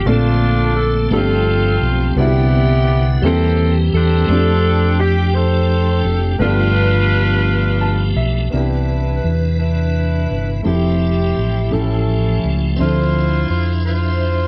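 Gospel in a slow, straight 6/8 at 57 BPM, reverent yet jubilant, this short cut from a longer piece sets a dark, vintage saxophone section with light vibrato up front on the melody over a round, punchy fingered electric bass. A warm baby grand piano with short sustain accompanies in the background and adds a fill from 7.5 to 8.5 seconds, while a piping tonewheel organ holds sustained chords through a fast rotary speaker, light overdrive and chorus vibrato, its key click audible. Rich extended chords such as Bbmaj9, G9sus4 and Cmaj9 move the harmony into a second section at 8.5 seconds, all bathed in studio reverb.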